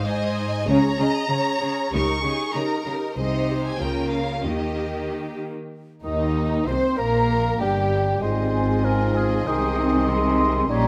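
A quick, spirited classical-period movement for symphony orchestra, this graceful passage in Ab major moves at 96 BPM in a straight 2/4 and is cut from a longer piece. The strings carry it from the start, with a rich, focused violin section singing the melody over a second violin line, a dark, intimate viola section in accompaniment, and a bowed bass formed by a clear, smooth cello section and a rich double bass section. At 6.0 seconds the winds and brass join, with a clear oboe and a pure, mellow flute ensemble adding upper lines, a mellow bassoon in accompaniment, and a distant, roomy French horn section holding dark sustained chords. A vintage-toned clarinet enters in the background at 6.1 seconds with its own second line. The harmony moves from Ab through Eb7 in the first half before turning to Cm and Gm and settling back on Ab. Close, detailed microphones capture the vibrato of the strings inside a moderate scoring-stage reverb.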